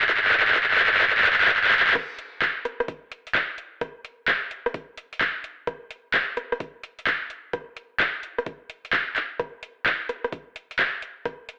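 An up-front, overdriven garage drum kit opens this late-night, soulful UK garage excerpt with a building drum fill of crash cymbal, handclaps, metallic hi-hats and rim clicks. A knocking, layered electronic kick sits lower in the mix. Both ride a 129 BPM, 16th-note swing into the drop at 2.0 seconds, heard through a thin, high-passed telephone-like sound and a moderate digital room reverb.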